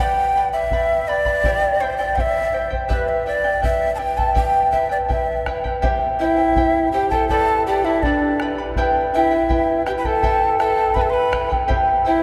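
A straight 2/4 pulse at 82 BPM carries this melancholic, earthy Andean folk piece in E minor, cut from a longer performance. A large wooden quena leads the melody up front, its breathy, bright tone marked by vibrato, tongued chiff, lifted highs and a slightly unsteady line. Beneath it, a fingerpicked charango with double strings, some doubled at the octave, gives a shimmering acoustic accompaniment over a progression moving through G, C and Em. A deep, dark bombo, close and dry, enters at 0.7 seconds. At 6.2 seconds, shortly after the second section begins, a bamboo pan flute adds a lower second line with a reedy, warm sound, vibrato and rolled-off highs. The ensemble sits in a church or concert hall, bathed in a long, wet cathedral reverb.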